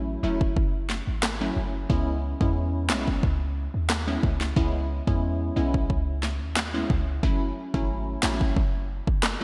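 Hypnotic and bouncy, this dancehall excerpt at 90 BPM pairs a glassy, crystalline wavetable pluck with chorus and a moving notch, plucking over F#m7 and C#m7 chords, atop a deep, boomy 808-style bass, while an up-front afro-pop drum kit of deep kick, sharp snare, rim click and handclaps with gated reverb enters at 0.4 seconds, all set in bright 1980s-style digital production with light reverb.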